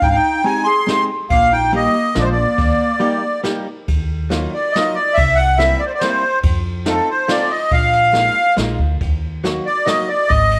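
A reedy, airy accordion with light tremolo tuning sings the melody up front in this whirling, bittersweet musette waltz fragment, played with a rubato feel, while a mellow clarinet with vibrato and soft subtone adds a vintage second line until 3.4 s, a dark, clean, compressed hollow-body archtop guitar picks accompaniment from 0.4 s, a woody pizzicato upright bass holds the low end, and a small-room brush kit with dark cymbals and a boomy kick sits beneath, all set in a moderate plate reverb.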